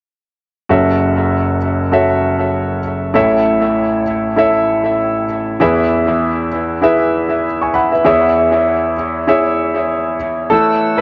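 An echo-heavy mix with a rounded, muted top end sits in a moderate echo chamber and a small room. A clear, intimate grand piano, up front with tape echo and audible action noise, carries this hopeful, uplifting pop excerpt at 98 BPM with a light swing on the sixteenths, moving through F#m7, A, E and C#m/E. At 10.5 seconds a quiet, warm tonewheel organ slips in with sustained high chords through a slow rotary speaker just before the cut at 11.0 seconds.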